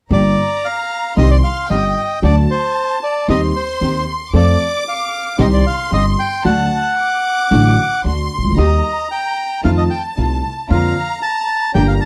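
Tense and passionate, this tango moves at 114 BPM in G minor with a rubato feel: a reedy, up-front bandoneon carries the melody with a slapback echo, while a lush, vibrato-rich violin section sings a second line above it. A mellow grand piano with audible action noise supplies the accompaniment, a dark, floating string section plays soft-attack stabs in the background, and a woody, thumpy pizzicato upright bass holds the low end. The dry, close, 1970s-style recording carries light reverb, and the passage is cut from a longer piece.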